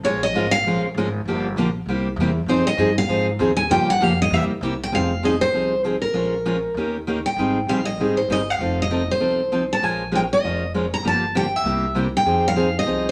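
Bittersweet and swinging, this short excerpt of acoustic string swing in F minor moves at a brisk 196 BPM, with a picked steel-string guitar carrying the melody in a solo turn over the first 4.9 seconds while a second picked guitar sits up front in accompaniment and a pizzicato upright bass supplies a woody, thumpy low end on gut strings. Both guitars ring bright and close, the lead sounding especially fresh-stringed, as the harmony cycles through minor-seventh and dominant changes like Bbm7, Gm7b5, C7 and Abmaj7 across the two sections. A wet studio reverb gives the trio a lively room around it.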